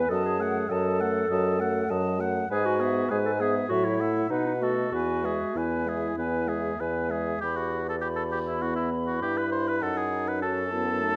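Set in a moderate recital-hall reverb, this cheerful, lively classical-period movement for wind quintet moves at a quick 100 BPM in E major before turning to E minor at 7.4 seconds, with a hollow, tongued concert flute carrying the melody above a lightly vibrato oboe second line, a punchy, vintage clarinet and a warm French horn in accompaniment, and a mellow, soft-attack bassoon sitting up front on the bass.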